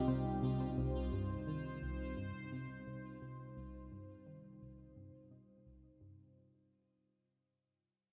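A straight 4/4 pulse at 86 BPM drives this short, cosmic stretch of sequencer-driven space music in C minor, cut from a longer piece and resting on a single Cm chord for its 6.4 seconds. The most prominent voice is a plucky analog bass riff, punchy and funky with a sawtooth-and-square bite, running from 0.1 s through lush chorus and delay while a filter sweep moves across it. Up front, a bright, resonant pad holds sustained chords, its detuned, ring-modulated tone evolving under chorus and shimmer reverb. A pulsing, tempo-synced gated texture adds a bright, chorused layer bathed in its own reverb. Beneath them a deep, round sine sub bass sits in the background, and a very quiet, mellow pluck traces gentle arpeggios from 0.1 s to 6.1 s. A long plate reverb and a dark production give the expansive scene its depth, and the whole passage fades out as it plays, the sub bass included.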